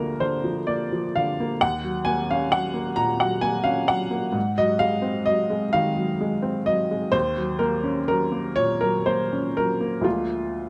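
A close, detailed recording with light reverb places a clear, woody upright piano up front, its short sustain giving each note a natural presence in this brief excerpt of neoclassical minimalist piano. Playing alone in a rubato 6/8 across a span from low D2 to high Bb5, the piano moves through gently shifting harmonies in Eb dorian, from Ebm7 to Ab7 and back, before settling on Bb7/D at 10.0 seconds. The mood is reflective and melancholic, unhurried and inward-looking.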